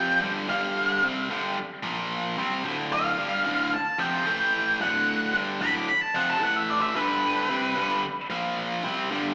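A raunchy, gritty rock passage opens with both guitars at once: a tight, bright, double-tracked rhythm guitar playing a picked riff up front while a dark octave-fuzz lead carries the melody high above it in straight 4/4 time. Both guitars are distorted and carry a slapback echo, and the whole cut sounds like a live club gig heard through the venue's PA, with a small-speaker quality and a lush hall reverb. The lead drops out at 8.0 seconds, leaving the riff alone until the fragment ends at 9.3 seconds.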